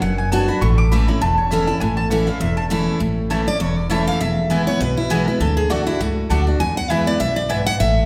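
Rustic and virtuosic, this swung bluegrass excerpt opens with a woody mandolin taking a solo over stabbing double-stringed chords, while a full-bodied picked dreadnought guitar picks out accompaniment and a growly pizzicato upright bass anchors the low end. At 3.5 seconds a second, brighter picked guitar steps up front with the melody as the harmony moves from B minor and A through E and D. The whole ensemble rings in the generous reverb of a church or concert hall.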